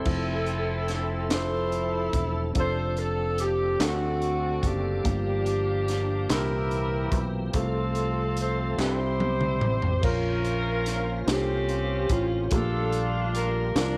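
A saxophone section carries the melody with vibrato and a distant, roomy glow in this slow, jubilant yet reverent 6/8 gospel passage in F major at 48 BPM, over a woody upright piano with audible action noise, a tonewheel organ holding chords through a slow rotary speaker and chorus vibrato, a punchy fingered electric bass, a crisp drum kit with a high-tuned snare that plays a fill from 8.8 seconds, and very quiet hollow handclaps from 1.3 to 9.2 seconds, all in light small-room reverb, before the harmony moves to Bbmadd9 at 10.0 seconds.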